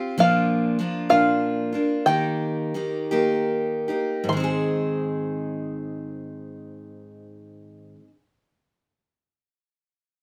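Warm and gentle, this short folk excerpt unfolds in a flowing 6/8 in Ab major, moving at a relaxed 47-67 BPM counted in dotted quarters. A picked steel-string acoustic guitar carries the accompaniment from the start, its bright, up-front tone ranging from Ab2 to Ab4 with an auditorium-sized body. A bluegrass banjo enters at 0.2 seconds to take the melody high in its range, from F5 to C6, sounding mellow yet twangy and percussive under its fingerpicks, and sitting a little louder than the guitar. The tempo slows from 0.2 to 4.3 seconds as the harmony moves from Bb to Eb, then settles onto Ab at 4.3 seconds as a second section begins. A moderate studio reverb gives the pair a natural sense of space, and both instruments fall away near the 8-second mark, the piece having been cut from a longer performance.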